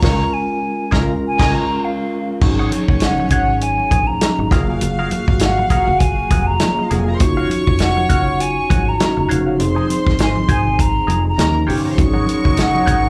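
Silky and smooth, this 13-second slice of lush 1970s-style soul at 100 BPM with a gentle sixteenth-note swing sets a hollow, vibrato-tinged flute melody over a floating bowed string line and mellow tine electric piano, with a twangy wah guitar riff, punchy fingered bass and a tight, dry soul drum kit opening on a band accent before quiet ringing congas enter at 2.4 seconds and vintage horn stabs with octave doubling arrive at 12.0 seconds, all heard through the light club reverb of a live venue's PA.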